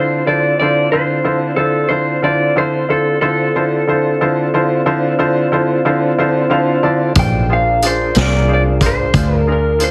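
Heavily compressed and radio-like, with a moderate club reverb, this mournful, smoky slow blues in D minor is cut from a longer piece. It moves in 12/8 at 61 BPM with a straight feel and is tuned to A4 = 436 Hz. An electric guitar through a small old amp carries the melody with a dark, slightly broken-up, lo-fi picked tone. A bright, woody upright piano sits up front in accompaniment, slightly detuned, and plays a fill from 6.2 seconds, while a lightly overdriven tonewheel organ holds sustained chords in the background with key click and a slow rotary speaker. At 7.2 seconds the harmony shifts from Dm9 to Bb7 as a round, foam-muted fingered electric bass and a vintage drum kit enter; the kit has a punchy kick, a medium-tuned snare and hi-hat, with a rolled-off top.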